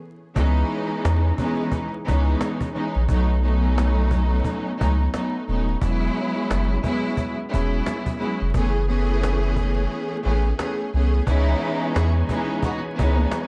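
After a short break, a tough, reflective boom-bap hip-hop groove in C# minor settles in at 0.4 seconds at 88 BPM with a 16th-note swing: lush, bowed strings with vibrato sit up front over a deep, round dub sub bass and a snappy cajon recorded in a live room, moving through C#m7, B7, E6 and F#m11. The kick drops out at 9.9 seconds, and at 11.3 seconds a reedy tonewheel organ with a fast rotary speaker holds chords in the background while a second, expressive string section adds portamento stabs through tape echo. Studio reverb, vinyl crackle and a dark, warm production shape this fragment of a longer piece.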